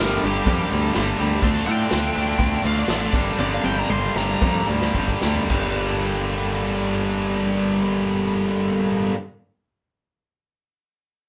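A bluesy, distorted lead guitar solo opens this swaggering, brooding classic rock excerpt, riding over two tight, bright-edged riff guitars, one up front and one in the background, while a growling, overdriven electric bass anchors the low end. A very quiet picked steel-string acoustic guitar sits faintly underneath for just the opening moments. The vintage drum kit enters at 0.5 seconds with a punchy kick, medium-tuned snare, dark cymbals and toms. The band then slows down over the minor-key move from Gm to Dm and back to Gm, and the drums round it off with a fill. The lead guitar drops out at 4.7 seconds and the drums stop at 5.6 seconds, leaving the riff guitars and bass grinding on into a new section. The whole band sounds as if it is playing live together in a small, reverberant room.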